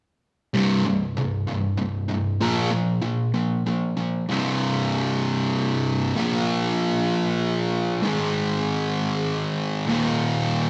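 Cathartic and brooding, this rock passage in a straight 6/8 feel is cut from a longer piece and carries a lone fuzz guitar, electric, bright and picked, double-tracked and up front, whose distorted power chords move through C, B-flat, A-flat and E-flat shapes. The guitar plays from 0.5 s to 10.7 s, its lines sitting low in the register, with a second phrase beginning at 4.3 s. A wet stone room reverb surrounds the part, giving the feel of a band playing live together in one space.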